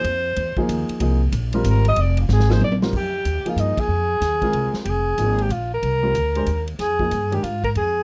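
A breathy, whispered alto saxophone solo opens this intense, spiritual modal jazz excerpt in F dorian, swinging in 3/4 at 187 BPM over an Fm11 chord, with short-sustain grand piano accompaniment, a woody pizzicato upright bass up front, and a studio-room big-band drum kit with a punchy kick whose fill at 2.3 seconds ushers in a new section before a full-band accent at 3.7 seconds, in a dark, dry, warm production.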